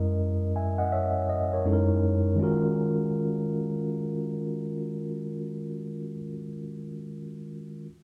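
Late-night and soulful, this short R&B excerpt in swung 4/4 features a mellow tine electric piano playing clean, up-front accompaniment through its built-in speakers, moving from a Gb13 chord to Ebm11 at 2.4 seconds, bathed in a moderate echo-chamber reverb within a dark production.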